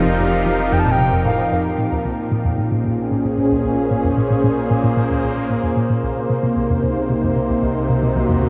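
A steady, straight 4/4 pulse at 113 BPM drives this hypnotic, expansive stretch of sequencer-driven ambient space music in Bb minor, cut from a longer piece and bathed in a huge, wet reverb. A squelchy, bright resonant blip pluck with phaser and delay carries the riff over an airy, evolving chorused pad up front, while a round, deep analog bass sits in the background. A pure wooden flute with vibrato and delay sings a brief melody until 1.6 seconds, and a breathy, wind-like noise texture is barely audible before the harmony moves from F7sus4 to Bbm7 at 1.8 seconds, where the bass fades in and the pluck takes on a filter sweep.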